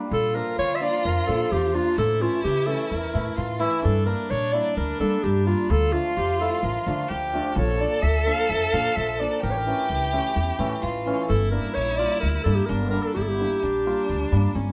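Klezmer at 129 BPM in G dorian sharp4, soulful and bittersweet, with a punchy, classical-style clarinet carrying the melody up front while a focused, bowed violin with vibrato plays a second line beneath it. A shimmering, ringing hammered dulcimer supplies accompaniment, and a woody, growly pizzicato upright bass sits prominently underneath as the chords move from Bb and A through Gm and Dm. The band plays live in one room with moderate studio reverb, and this 14.7-second passage is cut from a longer piece.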